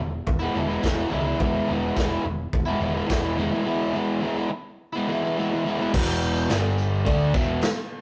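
Rowdy and swaggering, this short garage rock cut in E major struts at 106 BPM in a straight 4/4, led by a bright, double-tracked overdriven guitar riff sitting up front over a round, amped picked bass with tube saturation. A gritty, saturated drum kit with a punchy kick, medium-tuned snare, toms and crash comes in at 0.3 s, pumping in a small room with a rolled-off top, while a jingly, compressed tambourine joins in the background at 0.8 s. The rough rehearsal-room sound carries cassette tape grit and a moderate stone-room reverb, and at 5.9 s the harmony shifts from a steady E to a quick E5, G5 and E5 power-chord move.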